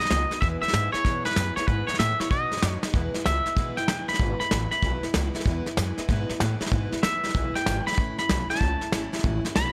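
Recorded in a small, airy room with a polished, up-front sound, this rollicking, upbeat rockabilly cut in E major swings at 190 BPM. A twangy electric guitar with tape echo carries the melody over a boxy parlour-style steel-string acoustic guitar, a woody, thumpy pizzicato upright bass on gut strings, and a brushed drum kit with a tight kick and medium-tuned snare. After a drum fill at 2.8 seconds, the clean electric guitar breaks into a solo from 2.9 seconds, with the chords moving from E to A at 8.0 seconds.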